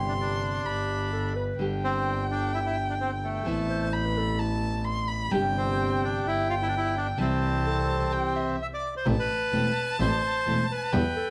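A dark, bowed violin, a fingerpicked nylon-string guitar and a clear, bowed double bass open this tense, passionate tango at once, with the bandoneon joining almost immediately to carry the melody. The tempo sits around 128 BPM in 4/4, but the feel is rubato, pushing and pulling through a C major progression that moves from Gsus4 and G through Amadd9 and Em7/G to C. The reedy, bright bandoneon leads up front, while the violin adds a second line high above it, its vibrato and portamento lending an expressive edge over a smooth top. The guitar's full-bodied classical accompaniment and the bass's biting, nasal tone with light vibrato and an airy bow give the music an earthy foundation close to the listener. A mellow, distant clarinet enters at 0.7 seconds as a second line, sounding roomy in the moderate studio reverb. A stop at 8.6 seconds breaks the flow before a new passage on Am begins at 9.1 seconds, and the recording, cut from a longer piece, ends shortly after.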